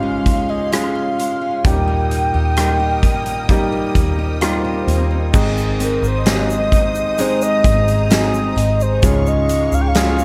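Hopeful and tender, this brief pop ballad moves at a slow 65 BPM in Ab major, its chords shifting from Db to Eb and then settling on Ab before returning to Db. A mellow, horn-like synth lead carries the melody with a round, warbling sawtooth tone, soft attack, vibrato and a chorus effect. Beneath it, a felt-muted upright piano sounds intimate and up front, its thin felt and audible action noise giving it a warm, natural character, while a lush, bowed string section holds sustained chords and a very quiet picked steel-string acoustic guitar adds full-bodied arpeggios. A dark, foam-muted electric bass supplies a round, amped low end, and a huge arena drum kit enters at 0.3 seconds with a fat snare, punchy kick, hi-hat, rim clicks and crash cymbal, sitting up front in a big natural room. A faint electronic swell sounds at 4.6 seconds, and at 5.3 seconds a grainy egg shaker joins in the background as the music moves into its second section, all set within a small room reverb.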